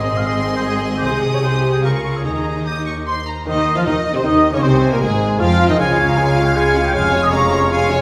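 A reverberant recital-hall sound surrounds this fast, dramatic romantic orchestral passage in 3/4 at 155 BPM in Ab major, a lively and graceful cut from a longer movement. Lush, focused symphonic violins carry the melody over an intense chamber violin line and a distant, roomy oboe, while a close viola section accompanies and even, rich cellos join clear double basses with light vibrato on the bass. At 3.1 s an airy, hollow flute ensemble adds a second line and a very quiet, dark trumpet section plays stabs, and from 3.5 s a vintage-toned clarinet, a smooth-topped bassoon and a mellow, soft-attacked French horn section holding sustained chords fill in the background.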